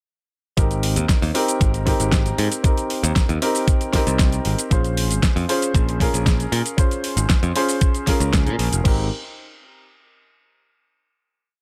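Feel-good and sunny, this short nu-disco piece moves at 116 BPM in Ab major, opening straight into a drop at 0.6 seconds where an overdriven, thumpy electronic kick pounds four-on-the-floor and a layered pop kit adds a fat snare backbeat, shaker, hats and crash. A bright, growly picked electric bass plays a punchy syncopated riff up front, while a dark, mellow baby grand piano holds rootless chords with syncopated pushes, its intimate action noise audible under sidechain pumping and analog delay. The harmony shifts from Abmaj7 to Bbm9 and returns to Abmaj7 for a final chord at 8.9 seconds, all in a dry mix.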